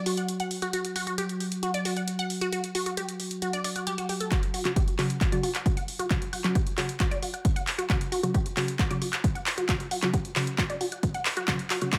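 Driving peak-time techno at 134 BPM, this intense 12-second cut from a longer track opens with a mellow, detuned analog drone that ends at 4.4 seconds, while a juicy, squelchy blip pluck riff with phaser, tube saturation and tape echo runs alongside a punchy, tape-warm analog drum machine of handclaps and hi-hats, all pumping against the sidechain. At 4.3 seconds a build-up begins as a punchy electronic kick drum arrives up front, joined by crisp, evolving wavetable chord stabs with digital delay, a drum fill and a filter sweep, over an F#5 chord. The drums carry the character of a large room, and the whole sits in a moderate stone room reverb.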